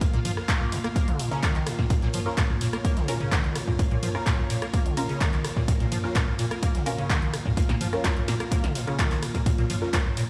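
A gritty, raw acid house track in Bb minor at 127 BPM opens at once on a single Bbm chord. An overdriven, punchy electronic kick sits up front beside a dry analog drum machine playing handclaps, hi-hat, ride cymbal, rim click, snare and toms. A squelchy, hollow square-wave acid bass carries the riff, its resonant filter sweep and decaying notes treated with ensemble chorus and delay, while a lush vintage string machine holds sustained sawtooth chords with a slow attack, a moving notch and sidechain pumping. Far back in the mix, a very quiet acoustic garage kit adds hi-hat and a medium-tuned snare, saturated and warm with a rolled-off top. At 1.3 s a muted, detuned dub chord stab enters, its filter pluck and short decay smeared by phaser, chorus and delay. The music sounds as if played on a big sound system in a bare room, with stone room reverb lending light ambience to this short cut from a longer piece.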